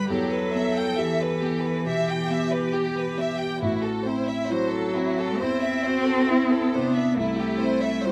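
Neoclassical piano and strings in E minor at a rubato 68 BPM, this short, longing and melancholic excerpt moves from Em through Am to C at 7.2 seconds. A close, expressive chamber violin section carries the melody with vibrato between E4 and B5, while a single cello sings a focused second line beneath and a lone viola adds accompaniment in a narrow middle range. A felt-muted upright piano, mellow and intimate with audible action noise and a vintage tinge, supports the strings from A1 to G4 under light reverb.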